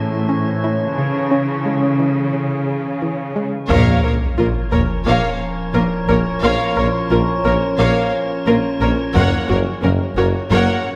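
A metallic, inharmonic FM drone sits up front in a moderate scoring-stage reverb, its eerie, warbling sustained chords colored by chorus, phaser and built-in reverb, in this futuristic, vast fragment of a hybrid orchestral and electronic film score at 88 BPM in a straight 4/4. From the start a distant, even cello section holds the bass, while a twangy, string-like resonator pluck with a bright sawtooth edge enters at 0.3 seconds with arpeggios treated with chorus and tape echo. The harmony moves from A to C#m before the music opens out at 3.7 seconds, when a band accent strikes as the taiko ensemble enters and an electronic sub drop delivers an impact. There the full strings join: a close, expressive violin section with soft attack carries a second line, an intense viola section accompanies in the background, and double basses with a classical-style solo tuba deepen the low end under an A#m chord. 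The taiko ensemble, struck with heavy sticks, returns at 9.2 seconds as the harmony settles on F#, and the drone sustains to the cut at 11.0 seconds.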